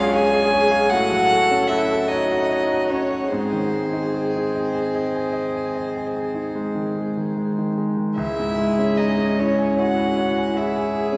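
In a slow, rubato 12/8 pulse of 48-53 BPM, counted in dotted quarters, this passage from a longer classical movement for piano quartet in C# minor unfolds with an elegiac, solemn mood. A single violin carries the melody up front, its bowed sul tasto tone pure and floating with a soft attack. One cellist plays a second line that sounds dark and distant. The viola adds accompaniment with an intimate, close sound, light vibrato and an airy bow, while the grand piano, also accompanying, rings out brilliant and polished with long sustain and audible action noise. The harmony moves from C#7 over B through F#m over A and G# before settling on C#m at 8.2 seconds. A church reverb lasting 3.4 seconds surrounds the ensemble with the resonance of a church or concert hall.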